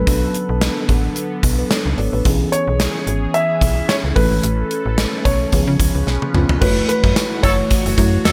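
Light reverb and a small-room ambience frame this short, polished slice of 1980s-style pop, set at 110 BPM in F# minor with a lightly swung sixteenth-note feel and an urgent, nostalgic mood. Up front, a gated 80s drum kit with a punchy kick, medium-tuned snare, bright crash cymbal and hi-hat, tambourine and toms drives the track, its gated reverb lending an airy, stone-room sheen, and a drum fill arrives at 6.1 seconds. A snappy, slap-like FM bass with a metallic attack anchors the low end. A soft, round FM electric piano with chorus supplies dark accompaniment alongside a swirling, detuned analog pad treated with phaser and chorus, while a warm grand piano carries the melody through a digital delay. The harmony moves from Bm7 through E6, A and C#7 to F#m7 as a new section begins at 6.6 seconds, and a tight, distant horn section adds stabs from 7.4 seconds.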